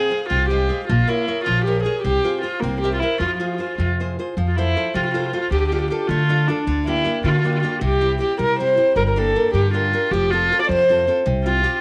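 A small room's light reverb frames this short cut from a longer Italian folk serenade, romantic and wistful in mood, with a lilting, straight 6/8 feel. A single dark viola carries the melody up front, its soft attack, airy bow and light vibrato giving the line an intimate, close feel with a smooth top. A nylon-string guitar fingerpicks the accompaniment throughout, sounding bright and full-bodied with fresh strings, though it sits further back in the mix. An upright bass enters at 0.3 s, its pizzicato gut strings woody and thumpy as it anchors the low end up front. The opening phrase moves through shadowed minor chords before a second section at 4.4 s opens onto F, Dm and Gm, closing on a suspended Csus4 at 11.3 s.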